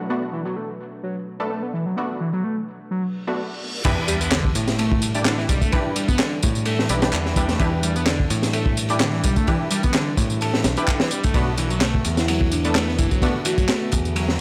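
A screaming, overdriven synth lead with a guitar-like edge plays a riff through phaser and tape echo from the first second of this raw, gritty breakbeat excerpt at 128 BPM in E minor, with a slight swing on the 16ths. Behind it, a warbling, nostalgic pad holds sustained chords in the background, chorused and pumping against the sidechain, while a bold, nasal orchestra-hit-like stab punctuates with detuned unison brightness and a cassette-tape tint. A reverse cymbal and sub drop rise out of the background from 3.2 s, leading into the drop at 3.8 s, where a crunchy, punchy breakbeat kit with a high-tuned snare and dark cymbals arrives up front alongside layered electronic tambourine and handclaps and a direct, picked electric bass. The harmony moves from Bm7 to Em7 and back to Bm7 near the end, and a mellow, round marimba with soft mallets adds a brief melody through a small-speaker filter and tape echo from 12.2 s. 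The whole has a dry, gritty hardware sound with transformer saturation and only light studio reverb.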